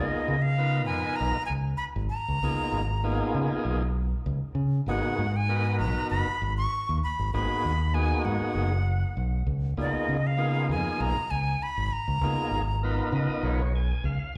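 A breathy, bright flute with vibrato and a reedy edge carries the melody up front until 13.1 seconds, its slapback echo adding a little bounce to this slick, nocturnal jazz excerpt at 98 BPM in straight 4/4. A thick, lightly overdriven tonewheel organ spinning through a slow rotary speaker fills out the harmony over C#13 and G#m9 chords, then takes a fill from 12.8 seconds, while a warm, direct fingered electric bass anchors the low end. The sound is a live club gig heard through the venue's PA, with light reverb and small-room ambience.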